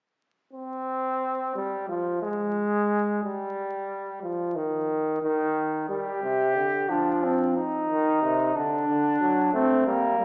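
Heard through vinyl crackle, a small-speaker tone and a wet recital-hall reverb, this solemn, serious imitative canzona for brass moves at 90 BPM in 4/4; a bright trombone with a soft attack opens the accompaniment at 0.5 seconds, and a mellow flugelhorn joins as the second line at 5.9 seconds, both carrying light vibrato and a distant, roomy classical presence as the harmony passes through G5, Cmadd11 and D before this cut from a longer piece ends at 10.2 seconds.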